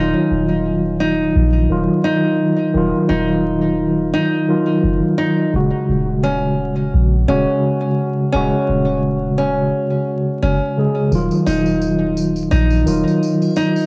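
This smoky, cinematic trip hop piece, cut from a longer track, opens with a clean tine electric piano placed up front, its chords colored by harmonic tremolo, cassette tape and tape echo, as if heard through built-in speakers. A bright, fingerpicked nylon-string guitar plays classical-style arpeggios beside it, with fresh strings and audible finger squeak, also treated with cassette tape and tape echo. Beneath them, a soft, round 808-style bass with a deep sine tone, fast attack and dark decay carries the low end through transformer saturation until it stops at 13.0 seconds. At 86 BPM in 4/4 with a light sixteenth-note swing, the harmony in Eb minor moves from Ebmadd9 to Dbsus4/Eb and back again. Faint tambourine and triangle, close and dry alongside tube shaker and group handclap, enter at 11.1 seconds, while moderate spring reverb, small room ambience and vinyl crackle lend the recording a homemade cassette feel.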